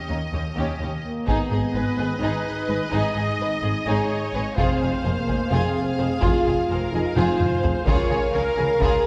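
Epic and relentless, this cinematic orchestral film score cue moves in an urgent 7/8, cut from a longer piece. Bowed strings open together with a brief build-up: violins carry a smooth melody high above a lush second violin line, while rich violas fill the middle and clear, focused double basses join the cello section, which sits in the background, to anchor the low end. At 1.0 seconds a tight French horn section enters with sustained chords, and at 1.3 seconds a taiko ensemble struck with heavy sticks drives the music forward, with a drum fill between 7.2 and 7.9 seconds. The harmony moves from D#7 through G#m and Fm before landing on C#. Wet scoring stage reverb places the orchestra further back in the room, lending the whole ensemble a grand, enveloping sheen.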